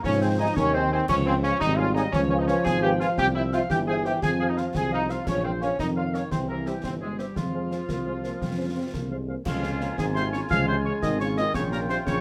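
A steady 6/8 pulse from concert snare drum, concert bass drum and clash cymbals with dark cymbals drives this stern, martial wind-band march, which is cut from a longer piece. A warm, vintage-toned cornet with light vibrato carries the melody over a present trombone section holding sustained chords and a mellow tuba anchoring the bass up front. A clear, tight woodwind section, a smooth-topped euphonium and a distant, roomy French horn section fill in second lines and accompaniment, a pure, wooden piccolo slips in behind them at 9.5 seconds, and light reverb surrounds the band over a faint mains hum.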